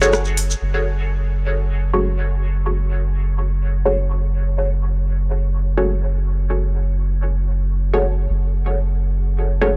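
A dry, close-sounding cut from a longer dub techno piece sits in F# minor at 125 BPM, cavernous and meditative around an F#madd9 chord. Muted, detuned chord stabs with a sub octave, phaser and dub echo pluck over a deep, round sub bass held on F#1. A grainy acoustic shekere and an overdriven electronic deep house kit of metallic hi-hats and rim clicks open the first half second, and from 0.6 s a filter sweep reshapes the evolving stabs.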